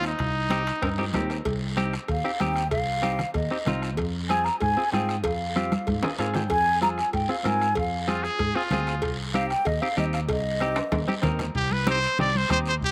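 A bright, up-front trumpet opens this fiery, driving cumbia excerpt in C minor at 190 BPM, over clean semi-hollow electric guitar with spring reverb, a dark, round fingered bass, soft-beater bombo, raspy guiro, ringing timbales and cowbell with slapback echo, and damped congas entering at 0.2 seconds. An airy, mellow concert flute with vibrato and slapback echo carries the melody from 2.1 to 11.2 seconds as the chords move from Cm to Fm and back, with drum fills and a brief guitar fill around 5.9 seconds. The trumpet returns for a solo at 11.6 seconds, all in a dry outdoor sound.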